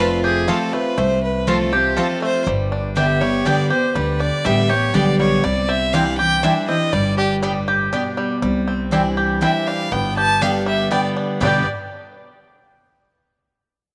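From the first second a clear, up-front bowed fiddle with light vibrato carries the melody in a lively, joyful 3/4 bluegrass passage at 121 BPM in G mixolydian, over a full-bodied jumbo steel-string acoustic guitar with fresh strings and audible finger squeak, twangy, percussive fingerpicked banjo arpeggios, woody double-string mandolin stabs tucked in the background and a thumpy pizzicato upright bass, all set in a moderate echo-chamber reverb as the chords move from F through G and Cadd9 in this short cut from a longer piece.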